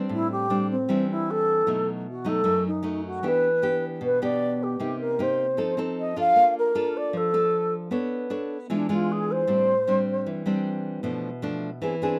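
Bossa nova in an intimate, smooth mood, cut from a longer piece, with a reedy alto flute carrying the melody over fingerpicked nylon-string guitar. The flute sounds airy, with vibrato and a soft attack, and stops at 10.3 seconds while the classical guitar, full-bodied with audible finger squeak, plays on to the end at 12.2 seconds. The chords move from Am7 through Bbmaj7 and E7b9 before closing on Bm7b5, heard in light reverb with the feel of a rough home demo.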